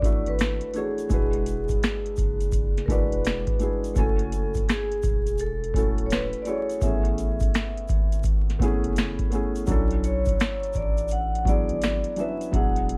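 Nostalgic and hazy, this lo-fi hip hop excerpt moves at 84 BPM in B dorian with a swung 16th-note feel, as a ringing, metallic vibraphone played with medium mallets carries the melody through a low-pass filter and a slow motor vibrato. A felt-muted upright piano, soft and intimate with a cassette-tape tint, comps through Bm11, E9, F#m9 and Amaj9 beneath it, while a round, deep dub sub bass holds the low end. Up front, a booming analog drum machine with a deep kick, tonal snare, metallic hats and finger snaps drives the groove, a grainy egg shaker sits in the background, and the whole track is wrapped in light reverb and vinyl crackle.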